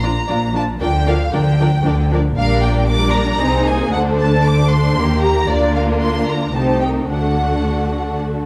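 A smooth, even violin section carries the melody high above this restless, stormy fragment of a quick classical-period movement for string orchestra, moving at 115 BPM in 3/4 with a rubato feel and chords that move from Bb through Eb to D. Expressive second violins shape an inner line, while distant violas with portamento fill the accompaniment, and focused cellos join an up-front, soft-attacked double bass section on the bass. A dark production and a wet scoring-stage reverb of 1.5 s surround the lush, bowed strings, and the melody stops at 8.2 s as the other parts continue to 8.5 s.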